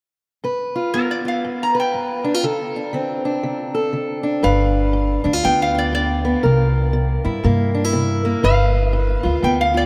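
Acoustic country blues with a swaggering, laid-back swing, this short cut opens on a fingerpicked steel-string parlour guitar, boxy and up front with fresh strings and audible finger squeak, over G7 and D5 chords. A bright, nasal metal-body resonator slide guitar, played with fingerpicks, carries the melody from 0.9 s, and a woody, growly pizzicato upright bass joins at 4.4 s as the changes move through G7 and C7. Everything sits in a vast, echoing cathedral-like space with a long, wet reverb tail.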